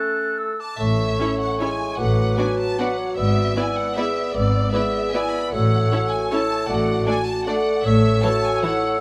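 A moderate scoring-stage reverb gives this short orchestral cut from a longer classical piece an open, elegant sheen, and its festive waltz-time lilt moves with uneven, rubato beats. The woodwinds start together: a clear, present clarinet and an airy, hollow flute with lifted highs carry second lines over a mellow bassoon accompaniment, while a distant oboe with light vibrato sounds a single note before dropping out at 0.6 seconds. At that point a studio violin section takes the expressive, vibrato-rich melody, and soon after, lush cello and double bass sections anchor the bass, the cello focused and the double bass smooth. From 1.2 seconds a soft-attacked symphonic violin section adds a background second line, a rich, even viola section fills in accompaniment, and a dark, roomy French horn section holds sustained chords. The harmony stays close to home, moving from A through Bm7/A and E7/G# back to A, then touching D/A before settling on A again.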